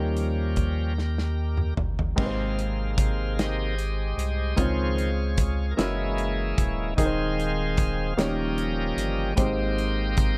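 This slow gospel excerpt opens on a shouting tonewheel organ, lightly overdriven through a fast-spinning rotary speaker, which carries the lead from the start over a clear, intimate grand piano accompaniment and a round, sine-like sub bass. An acoustic country drum kit joins at 0.2 seconds with a punchy kick, a medium-tuned snare and dark cymbals, and a drum fill runs from 1.0 to 2.2 seconds. The tune moves in a relaxed 6/8 at 50 beats per minute in Ab major, with a soulful, hopeful mood. At 2.2 seconds the harmony settles on Abmaj7 and moves through Dbmaj7, Gb9 and Ab/Eb before returning through Eb7 to Abmaj7. The piano's action noise can be heard, while the deep bass and the drums sit up front. The production is dark and warm, with little reverb.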